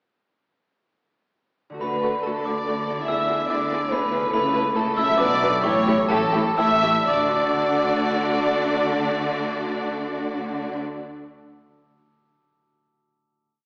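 In a straight 3/4 that slows from 3.7 to 7.1 seconds before settling on a final chord, this mischievous, whimsical film cue sets a dark, bell-like glockenspiel melody over a portamento-laden violin line doubling the tune at the octave up front, with lush background violins and focused violas holding repeated notes and sustained chords, rich cellos marking bass on the beats, distant double basses doubling them, and a bright concert harp rolling ringing arpeggios from 1.7 seconds, all heard from further back in a reverberant scoring stage with an AM radio sound.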